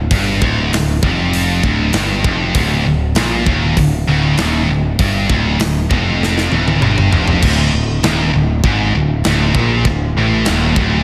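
Aggressive and epic, this heavy metal excerpt is cut from a longer piece and moves at 98 BPM in a straight 4/4, centred on D minor. A scooped, high-gain guitar carries the riff low in its range, double-tracked and up front with a bright, distorted bite. An overdriven picked electric bass anchors the low end with a growly, direct-and-amped tone. A tight, mid-forward metal drum kit with a big-room sound drives the groove, its medium-tuned snare and tight kick set against bright china, crash and hi-hat cymbals, with toms rounding out the kit. A drum fill from 6.2 to 7.4 seconds leads into a new section, where the harmony shifts from D minor to a D power chord for the final stretch. Light studio reverb gives the mix some air.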